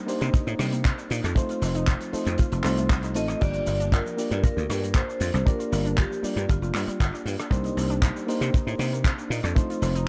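A growly, punchy slap bass sits up front with tube saturation, driving this cosmic, groovy nu-disco excerpt alongside a tight, dry kick and a damped 70s drum kit of dark cymbals, handclaps, hi-hat, rim clicks and shaker. A reedy electric piano comps through Cm9, F7 and Gm7 with sidechain pumping and dub echo, while a detuned, wave-folded unison pluck spins arpeggios in the background through cassette-tape colour. From 3.2 to 7.2 seconds a ringing vibraphone with fast motor vibrato carries the melody, all set in a small room within an echo-heavy mix.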